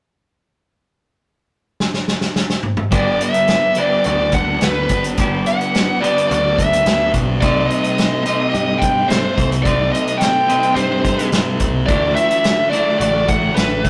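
A rough rehearsal-room recording with tube saturation and a moderate stone-room reverb carries this hazy, wistful cut of shoegaze and dream-pop rock at 107 BPM in G major, where a roomy, distant indie drum kit with a punchy kick opens with a fill at 1.8 seconds before, at 2.9 seconds, a thick fuzz guitar and an overdriven electric guitar take up the riff over a growling, overdriven picked bass, a bluesy distorted lead guitar sings the melody up front from 3.0 seconds, and a bright, twangy clean guitar recorded direct adds compressed arpeggios in the background from 3.5 seconds across Gmaj7, Cm6 and Dadd9.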